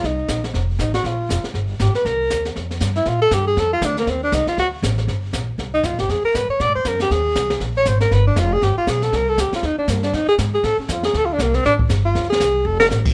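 A breathy tenor saxophone, upright bass and brushed drums all begin together in this relaxed small-group swing and bop excerpt, moving at a brisk 238 BPM in 4/4 with a swung eighth-note feel. The saxophone carries a solo throughout, sitting up front with a whispered subtone, soft attacks, scooped notes, vibrato and a smooth top that give it an intimate, sophisticated voice. Beneath it, the pizzicato bass sounds woody and growly. The kit, played with brushes in a small room, has dark cymbals, a high-tuned snare and a boomy kick. The harmony moves through colours such as Cm7, Gmadd11, G7 and F69 across two sections, the second starting at 5.1 seconds. A drum fill arrives at 12.7 seconds, the saxophone stops at 12.9, and a light reverb gives the whole group a gentle sense of space.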